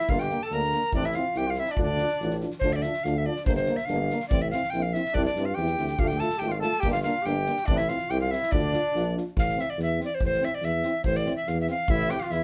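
A breathy, bright alto recorder with a crisp, chiffy attack carries the up-front melody from the first moment of this restless, virtuosic Balkan brass band excerpt at 142 BPM in D minor, joined by a distant flugelhorn second line with vibrato that drops in and out, two euphoniums in the background accompaniment (one clear, one warm), a roomy tuba bass set forward, and a punchy soft-mallet drum kit with a fat snare, the whole band sounding live in one room with moderate reverb as the key turns to A minor at 9.4 seconds.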